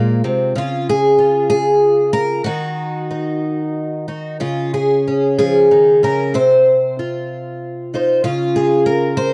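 A shimmering, octave-doubled picked twelve-string acoustic guitar sits up front with audible finger squeak in this gentle, hopeful 9.3-second folk fragment, played solo and rubato in 6/8 at 63 BPM in Db major (tuned to A4 = 438 Hz), moving through Fm, Db6, Ebm, Db and F5/C before a chordless closing passage from 8.2 seconds, all captured in a dry, close 1970s-style studio sound.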